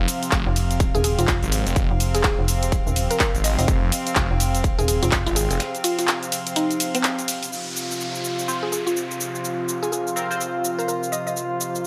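A swaggering, aggressive bass house drop in F minor at 125 BPM opens at once with a thick, swirling phased saw bass, distant bowed strings holding sustained chords under a low-pass filter, and an airy, breathy pad, all three pumping against a punchy electronic kick, a tape-warm garage kit of cabasa, handclaps, hi-hat and ride swung 60% on the 16ths, a gritty, very quiet sampler-style kit of hi-hat and snare, and a dark, metallic FM bass with overdrive. A woody, round mallet-like synth pluck carries the melody through chorus and tape echo, while the kick and both basses drop out by 5.6 seconds. From 7.5 seconds a filter sweep moves over the strings as an electronic downlifter sounds, and at 8.5 seconds a nasal, band-passed chord stab enters with phaser and tape echo, the whole cut from a longer piece and set in light reverb.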